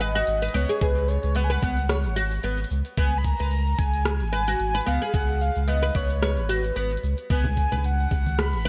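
Bright, 1980s-style digital production with light reverb and a digital ambience frames this short, peaceful organic downtempo excerpt, which rests on a single Db7sus4 chord with a gentle swing on the sixteenths. A breathy, flute-like synth lead carries the melody with a soft attack, vibrato and a sub-octave layer, thickened by analog chorus and delay, while a woody, plectrum-plucked fretless oud with doubled strings plays arpeggios through its own delay. Underneath, a round, sine-like sub bass sits up front with a sidechain pumping effect. A tape-warm organic electronic kit supplies crisp hi-hats, rim clicks and shaker through gated reverb, and from 0.8 seconds a gritty, thumpy, compressed kick joins until 8.2 seconds. Near the end, at 7.4 seconds, soft-handed congas and bongos appear close yet in the background, adding an acoustic touch as the fragment cuts off.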